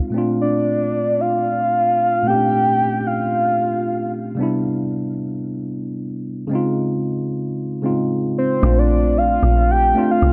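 A worn, slightly out-of-tune tine electric piano opens this relaxed, soulful amapiano excerpt at 113 BPM in Bb major, moving through Bbmaj9, Cmaj9 and Dbmaj9 chords while a soft, round octave-layered synth lead with chorus, phaser, tape echo and vibrato sings above it, falls silent, and returns shortly before a deep, percussive log drum bass lands at 8.6 seconds, the whole mix carrying a dry, gritty hardware character with transformer saturation and light reverb.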